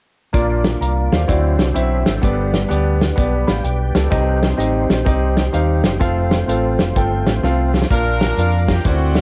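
A swung eighth-note feel in 4/4 drives this uplifting, hopeful stretch of uptempo gospel, cut from a longer piece. A natural, acoustic country drum kit with a fat snare and punchy kick sits up front, tinted by cassette tape, alongside a dark, round fingered electric bass carrying transformer saturation, while a clear grand piano supplies accompaniment. Further back, a percussive tonewheel organ holds full, sustained chords through a slow rotary speaker with light overdrive and chorus vibrato, adding a fill from 3.4 to 4.1 seconds before stopping at 7.9 seconds, just after a drum fill. At that moment a present, jazz-style horn section takes the melody with soft attack and light vibrato, colored by tape and analog delay, as a distant, intense studio string section bows sustained chords in the background. Light reverb and small-room ambience give the whole piece the feel of a homemade cassette recording.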